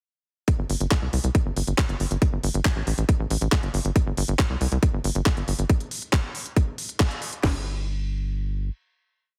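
A four-on-the-floor kick at 138 BPM drives this short, alien psychedelic trance piece, its layered electronic drums putting a tight kick, cracking snare and crash up front alongside crisp programmed hats and a clap backbeat, all tape-warm and re-recorded in a large room, while a punchy sawtooth-and-square sequencer bass rolls in sixteenths between G1 and C2 with a plucky filter and fast attack, the whole band hitting an accent at 7.0 seconds before the bass alone rings out a final note until 8.7 seconds, all in a dry, heavily compressed radio sound.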